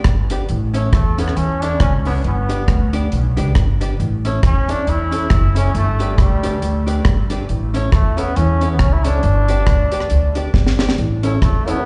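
A brilliant, distant trombone carries the melody from 0.9 seconds, its scooped notes trailing dub and slapback echo across a bouncy, upbeat ska groove in swung 4/4. Up front, a woody, thumpy upright bass with gut strings is plucked pizzicato, while a dry reggae drum kit with a high-tuned snare, tight kick, hi-hat and rim clicks drives the beat and drops a short fill at 10.6 seconds. A hollow-body archtop guitar, miked and amplified, supplies dark, clean, compressed picked accompaniment with its own slapback echo, sitting low in the mix. The harmony simply rocks between A and G throughout this fragment of a longer piece. Near the close, at 11.2 seconds, a mellow, round tonewheel organ adds brief stabs with key click, chorus vibrato and a fast rotary speaker. The whole thing sounds like a live gig heard through a venue's PA, with small-room club reverb and a dulled top end.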